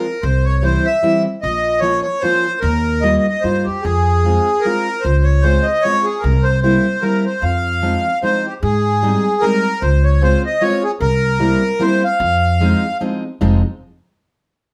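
A live-in-one-room sound with a wet studio reverb carries this bittersweet, whirling musette waltz in F minor at 150 BPM with a swung 3/4 lilt, where an up-front reedy, airy accordion with slow beating sings the melody over a fingerpicked plugged-in steel-string acoustic guitar of warm concert tone and a woody, bright pizzicato upright bass, the harmony moving from C, Bbm and Ebadd9 through Dbmaj7 and C7 before resolving to Fm7, with the accordion stopping at 13.0 seconds as guitar and bass ring on to 13.6 seconds in this cut from a longer piece.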